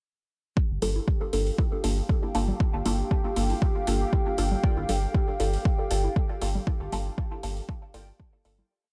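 An overdriven, up-front four-on-the-floor kick anchors this nocturnal, cavernous dub techno piece, joined by metallic open hi-hats, a round off-beat sub bass, muted phaser-washed chord stabs with dub echo and a filter sweep, echoing tape-warm congas, a brooding detuned analog pad that pumps against the kick, and a bubbling resonant stepped-filter texture in the background, while faint warbly lo-fi synth keys flicker at 4.6 and 7.9 seconds in a dry, gritty mix that fades out from 6.0 seconds.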